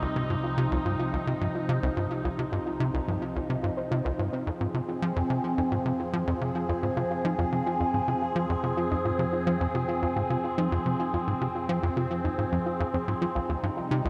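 Hypnotic and cosmic, this ambient piece, cut from a longer work, moves through Cm and Fm chords in a straight 4/4, bathed in a huge, wet reverb. A swirling, evolving analog pad holds sustained chords up front through phaser and chorus, while a tight, punchy sequencer bass drives a riff with tape echo and a soft, round pluck spins dark arpeggios with chorus and tape echo. Underneath, a very quiet, detuned analog drone hums low for the full 14.1 seconds.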